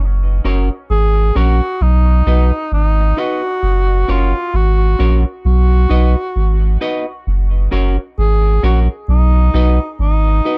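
A round, sine-like sub bass sits up front from the start of this sunny, uplifting roots reggae excerpt at 66 BPM in F# major, soon joined by a clean, scooped semi-hollow electric guitar with dub echo and a mellow, close-miked cor anglais melody with light vibrato and its own dub echo, all over a gently swung F# to B change in a dry, close 1970s-style studio sound.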